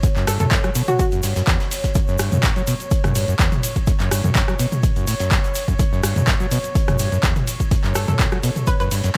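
This short excerpt of acid house opens on a small-room sound with light reverb, driving and hypnotic at 125 BPM in 4/4 with a slight swing on the sixteenths, set in F# phrygian. An overdriven electronic kick sits dry and up front, joined by a punchy analog drum machine, also overdriven and re-recorded in a large room, playing handclaps, hi-hat, ride cymbal, rim click and toms. Underneath, a very quiet breakbeat kit adds a dark, rolled-off hi-hat and a high-tuned snare, while a grainy, bright egg shaker ticks close but in the background. The overdriven acid bass carries the riff between E2 and F#3, squelchy and resonant with a sawtooth bite, a touch of chorus and tape echo. A warbling, nostalgic pad holds sustained chords around C#5 with chorus, built-in reverb and sidechain pumping, and a hollow, nasal square-wave pluck, detuned and bouncy with lush chorus and digital delay, plays brief melodic phrases between F#4 and B4 at 0.3 and again at 8.0 seconds.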